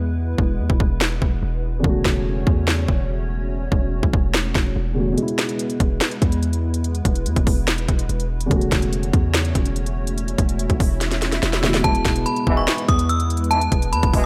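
Trap-flavoured hip hop with a triumphant yet dreamy mood, built on a half-time feel where a dark, boxy grand piano sits in the background beside a hollow, flute-like pad with ensemble chorus, while a punchy, heavy 808-style bass holds the low end up front. The electronic drum kit, with its hard-clipped kick, sharp snare, crisp hats and finger snaps, comes in at 0.4 seconds, and a drum fill and a background swell lead into 11.8 seconds, when a ringing, inharmonic FM bell melody with chorus and delay and vintage brass stabs with light vibrato arrive. The whole passage sits in a digital ambience and is cut from a longer piece.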